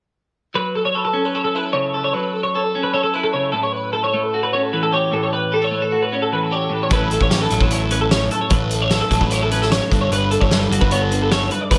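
A clean, picked electric guitar opens this bright, intricate math rock and midwest emo piece at 151 BPM, joined almost at once by a twangy, compressed twelve-string electric guitar playing arpeggios through analog chorus and analog delay over F#m7, A13 and Gmaj9 chords, before a fuzzy, overdriven picked bass and a loose, roomy indie drum kit with a fat snare and tight kick enter together at 6.9 seconds, the whole mix sitting in light reverb.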